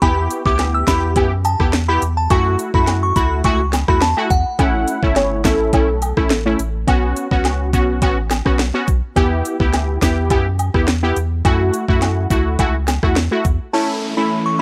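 A straight 105 BPM dancehall groove sets a tough, sultry tone, with an up-front electronic drum kit of knocking kick, sharp snare, rim clicks and smooth hats, backed by a round sine sub bass and a background layer of woodblock and cabasa. Punchy, detuned sawtooth brass stabs pump through chorus, plate reverb and cassette tape coloring over chords from Em through F#m7, A and Bsus2, while a crystalline FM bell carries the opening melody and a velvety, vibrato-tinged synth lead with analog delay takes a second line from 4.6 seconds. At 13.6 seconds the drums, bass and percussion stop, and the bell returns over an electronic downlifter as a hollow, flute-like pad rises in, giving this light-reverb home cassette recording a brief, mellow close on A.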